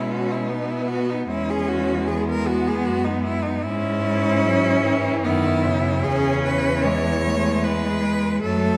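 A clear, close, up-front cello carries the melody in this melancholic, elegiac classical fragment for cello ensemble, moving at 75 BPM in a rubato 3/4 and tuned to A4 = 438 Hz. A second focused cello traces a line beneath it, a rich, even cello fills in the accompaniment, and another up-front cello with a smooth top holds the bass, all four bowed with vibrato throughout the 8.8 seconds. The harmony passes from G#m/B through E and E/G# to C#m/E, set in the moderate reverb of a scoring stage.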